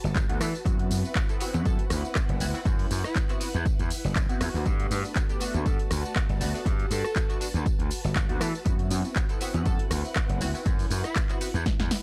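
Filtered disco house at 120 BPM in G major, with a swung sixteenth-note feel and a feel-good, joyful mood, cut from a longer piece. A punchy, up-front electronic kick and a layered house kit with handclaps, hi-hat, rim click, snare and tambourine drive the groove, while a very quiet acoustic tambourine adds a small-room shimmer. An overdriven, bright slap bass sits prominently alongside a funky, detuned sawtooth polysynth comping with filter plucks, chorus and phaser, and a swirling vintage string machine holds sustained chords in the background, all pumping against the kick. A mellow, tight horn section with light vibrato carries the jazzy melody from 1.7 seconds, over chords moving between Gmaj9 and a rootless D13. The mix has a dry, gritty hardware character with transformer saturation, and a short drum fill closes the passage at 11.7 seconds.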